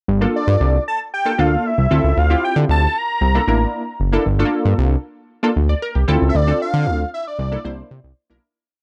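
A dry, close 1970s-style studio sound with a touch of digital ambience frames this short, funky and danceable early-eighties boogie funk verse, which fades out from 6.3 seconds. A thick, saturated analog bass drives a syncopated boogie line with chromatic approach notes and filter sweeps. Over it, a punchy chorused polysynth stabs rootless chords with ring-modulated bite, grace notes and short fills across Gm9, Dm9 and C13 harmonies, while a mellow, fat analog lead with sub-octave weight, vibrato, a moving notch and slapback echo wanders through a free melody.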